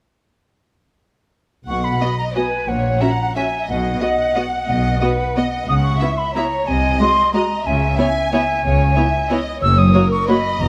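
An airy silver concert flute with a crisp attack and straight tone sits up front in this festive, sweeping excerpt of an orchestral ballroom waltz in B major, carrying a second line high above the strings from 1.7 s. It moves at 182 BPM in 3/4 with uneven beats and a rubato feel that gives the dance a lilting, pliant sway. A violin section sings the melody from 2.0 s with a soft attack and expressive vibrato, while a second, lush violin section hovers in the background alongside the flute. The viola section fills in the accompaniment with a smooth, even tone. Underneath, a focused, close cello section and a distant double bass section anchor the harmony as it moves from B through C#m7 to a closing F#. The whole passage is bathed in a moderate concert hall reverb that gives the ensemble a spacious, ballroom glow.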